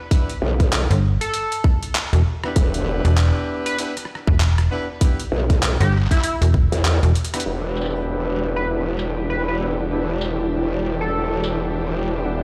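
This glitch hop excerpt opens at a swaggering, funky 98 BPM in E minor on an Em7 chord, with a 16th-note swing. Horn stabs, a gritty, pitched-down boom bap sampler-style kit of handclaps, hi-hat, rim click and tambourine, and a tight, layered electronic kick sitting up front come in first. The horn section is smooth-topped and loose with light vibrato and octave doubling, pumped by sidechain and softened by a low-pass filter and delay. The low end pairs a growling, saturated growl bass treated with chorus and a snappy, metallic slap-like FM bass, while an edgy, tearing sync lead with chorus and delay carries the melody. After a drum fill, the second section arrives at 7.5 s with a veiled, muted string section bowing sustained chords in the background, and a cloudy, evolving granular pad joins at 8.7 s. The track sounds as if played on a big sound system in a bare room, with large studio reverb.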